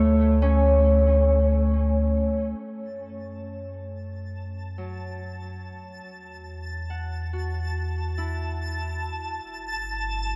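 Ringing, fingerpicked Celtic harp arpeggios trailed by diffuse delay sit up front over a deep, round sine sub bass to open this serene, peaceful ambient passage at 70 BPM, both fading in from 2.6 s as a twinkling, sparkling granular synth texture with an octave-up shimmer fades in at 3.2 s, the mix set in a huge reverb with a 7.0 s decay and a dark production while the chords move from D5 through F#m and Esus24 to Gsus2.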